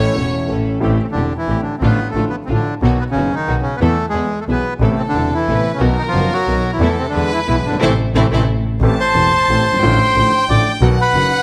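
Close, detailed microphones in a moderate recital hall reverb capture this passionate, melancholic tango excerpt in 3/4 at 180 BPM, played rubato in A minor: a reedy, up-front bandoneon carries the melody from 1.0 s over an intimate grand piano with audible action noise and deep bass, a biting, earthy bowed double bass, a soft sul tasto chamber violin section that returns as a second line at 4.8 s, and pure, floating studio strings adding background stabs until 8.4 s, with a band accent leading into the closing section.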